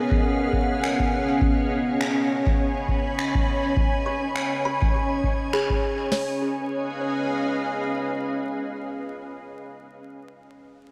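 Ambient dub with a hazy, peaceful mood and a gently swung 4/4 feel, heard here as an excerpt from a longer piece bathed in a huge, wet reverb and faint vinyl crackle. A soft, organ-like pad holds pure, detuned sustained chords up front, over Db7 and Abm harmony, while a woody, hollow kalimba plays mellow arpeggios in the background through tape echo and a filter sweep that runs until 6.1 seconds. A booming analog drum machine with a deep kick, tonal snare and metallic hats sits forward until 6.3 seconds, joined by natural-sounding finger snaps carrying dub echo, leaving pad and kalimba to ring on alone.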